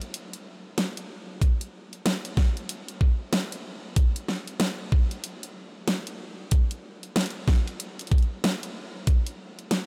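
A knocking electronic kick drum sits up front in this short glitch hop cut from a longer piece, entering at 1.4 seconds and dropping out at 9.2 seconds. Around it, a dubstep drum kit carries hi-hat and a huge snare from the very start, electronic, layered and produced, and also placed up front. The groove moves at 94 BPM in 4/4, with a 60% swing on the sixteenths giving it a loose, strutting bounce. The mood is playful and swaggering, built entirely from percussion. A light reverb surrounds the drums across the roughly ten-second span.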